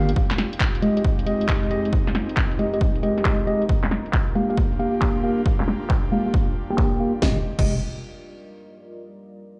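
A mellow tine electric piano plays filtered stabs with dub echo over an airy, breathy pad and a faint, dark ambient pad in this moody, late-night cut of two-step UK garage at 136 BPM in F dorian. A punchy analog kick and a garage kit of cracking snare, bright hi-hats, handclaps, congas and crash cymbal drive it with swung 16ths. The kick and kit start at 0.2 s and 0.1 s, while filter sweeps move across the drums and electric piano as the chords shift from Fm9 to Gm7. A deep, wobbling, chorused bass, heard only in a blip at the start, returns at 7.2 s with the Fm9. The whole piece is heard through a big sound system in a bare stone room.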